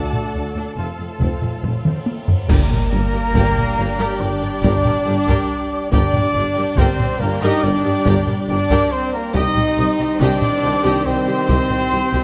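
Heavy-stick taiko drums, close and dry, drive this heroic, epic cinematic orchestral cue in G minor at 70 BPM, with a fill at 1.6 s leading into a band accent at 2.5 s, where clash cymbals and concert bass drum add a bright crash and an airy silver flute enters on a second line above lush bowed violins carrying the vibrato melody and a very quiet counterline, expressive viola accompaniment with portamento, rich sustained string chords, tight French horn and very quiet mellow trombone chords, dark trumpet stabs, and a bass of dark cellos, woody double basses and very quiet mellow tuba, all set in a moderate scoring-stage reverb.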